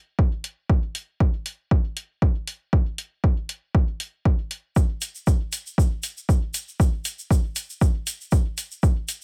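A punchy, up-front electronic kick drives this hazy, hypnotic techno excerpt at 118 BPM in 4/4 with a light 16th-note swing, joined by a tape-warm electronic hi-hat and, from 4.8 seconds, a grainy, mellow tube shaker, all in a dry mix.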